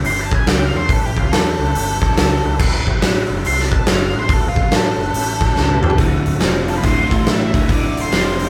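A swaggering, raunchy slice of blues rock with a southern rock streak, cut from a longer piece and driven by a shuffling swing at a brisk pace. An octave-fuzz lead guitar, dark and distorted, carries a solo over the first 6.0 seconds, riding above a huge arena drum kit with a fat snare and punchy kick that sits up front in a big, natural-sounding room. A growling fingered bass, overdriven and amped, anchors the low end while a thick, gritty tonewheel organ holds sustained chords in the background, its slow rotary speaker, chorus vibrato and key click adding texture. After a drum fill at 5.6 seconds, a crunchy, double-tracked rhythm guitar enters at 6.0 seconds with a picked riff as the chords begin shifting more quickly. The whole band sounds as if it is playing live together in one large studio, with a moderate reverb giving the performance a roomy, muscular feel.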